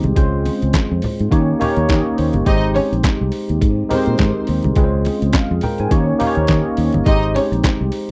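A barky, lightly overdriven tine electric piano with analog chorus sits up front in this joyful, celebratory disco excerpt at 104 BPM in Ab major, playing fills around 1.6 and 5.9 seconds over a Dbmaj7, Eb7 and Abmaj7 progression with a gentle 16th-note swing. Underneath, a gritty, pitched-down sampler-style drum kit with a thumpy kick, handclaps and hi-hat drives alongside a round, foam-muted fingered bass, while low-tuned congas played with soft hands sit in the background. A dark, woody string section with vibrato enters at 2.5 seconds as a lush second line, all captured in a dry, close 1970s-style studio sound.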